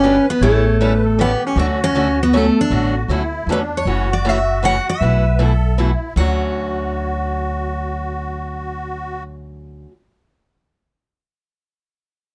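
From the very start, a charming, playful acoustic string swing piece in the jazz manouche style opens with all four parts together, moving at 156 BPM in 3/4 with a swung eighth-note feel in D major. Up front, a full-bodied jumbo steel-string guitar carries the picked melody on fresh strings, ranging from A3 to F#5. Beneath it, a second, boxy parlour guitar picks the accompaniment in a darker register, its finger squeaks audible through the close, detailed microphones. A reedy musette accordion adds a shimmering second line with its wet tuning, sitting further back in the mix and dropping out at 9.2 seconds. The upright bass is plucked on gut strings, sounding woody and thumpy near the front as the harmony moves from A7 to Dmaj7, then to F#m7 at 3.9 seconds and B7sus4, before returning to Dmaj7 at 6.2 seconds in this short cut with light reverb.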